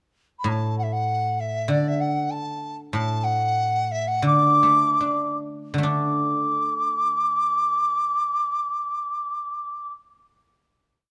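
Festive yet pastoral, this short, complete Chinese traditional piece for chamber ensemble moves in a rubato 2/4 between 65 and 99 BPM in D gong mode, easing into a slower pace from 2.9 to 5.8 seconds before settling on a final chord. A large dizi carries the modal, ornamented melody with an airy, hollow bamboo tone, buzzing membrane, vibrato and tongued notes, while the guzheng, plucked with fingerpicks, supplies a silvery, ringing accompaniment on its low strings that carries on to 11.1 seconds. Close, detailed microphones keep both instruments up front, with light reverb adding a touch of space.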